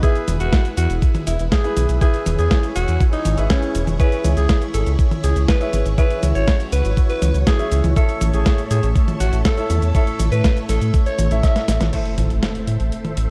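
A dark, warm production set in digital ambience frames this playful, danceable italo disco cut, taken from a longer piece. A breathy alto saxophone carries the pop-style solo melody, raspy and punchy with vibrato and a digital delay, until it drops out at 11.8 seconds. Beneath it, a lush vintage string machine holds full, slow-attack chords thickened by ensemble chorus, while a brilliant grand piano adds open stabs with long sustain. A gritty, compressed sampler-style drum kit with cabasa, hi-hat, medium-tuned snare, toms and crash sits in a large-room sound, with a thumpy electronic kick up front. A round, deep analog bass enters at 0.3 seconds with tube saturation, and the harmony moves through E, C#m and A before a drum fill leads to an electronic impact in the background at 11.9 seconds over an Am chord.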